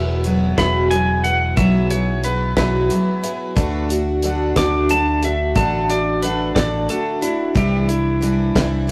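A twangy, clean pedal steel guitar with slapback echo and volume swells carries the melody from 0.6 s in this hopeful folk rock and heartland rock piece in 6/8 at 60 BPM in E mixolydian, over a shimmering, octave-doubled twelve-string acoustic guitar, a round, dark fingered electric bass and a damped 70s drum kit with a fat snare and tight kick, moving through Eadd9, D and Cadd9 in a rough rehearsal-room recording with tube saturation and moderate stone room reverb.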